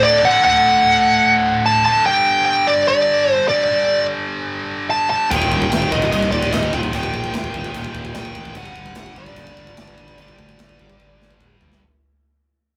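A straight 4/4 pulse at 148 BPM drives this dark, relentless heavy metal excerpt, which opens with a smooth, up-front overdriven lead guitar melody over a picked, scooped high-gain guitar riff. At 5.3 seconds the full band enters: a second scooped high-gain guitar, a double-tracked overdriven electric guitar in the background, a fuzzy fingered electric bass, a tight, polished metal drum kit with bright cymbals, and a barely audible bowed string section holding sustained chords. The rough rehearsal-room sound carries faint mains hum and moderate reverb, and the passage fades throughout before a drum fill at 11.0 seconds.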